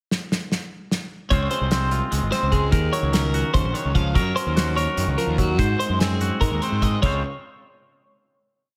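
Lightly reverberant, this short, complete math rock and midwest emo piece has a wistful, bright mood in an uneven 7/8. A loose indie drum kit in a pumping small room opens with a fill from 0.1 seconds, its tight kick, medium-tuned snare, hi-hat and crash up front. At 1.3 seconds a growly, overdriven fuzz bass enters with a punchy syncopated riff, a twangy, scooped electric guitar plays rolling fingerstyle arpeggios, and a clean, compressed twelve-string guitar repeats a picked ostinato through vibrato and slapback echo, moving through Dbmaj7, Ebm7, Gb and Ab7 before settling on a final Dbmaj7 chord at 7.0 seconds.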